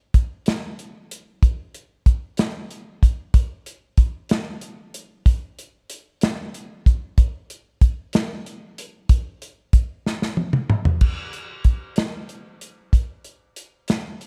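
Set in a straight 6/8, this uplifting, reverent gospel fragment, cut from a longer piece, is carried by a soul drum kit of crash cymbal, hi-hat, kick, snare and toms that sits up front with a dark, smooth, small-room acoustic character, a tight kick, a medium-tuned snare and a rolled-off top, and a drum fill at 10.0 s leads into a new section at 11.0 s.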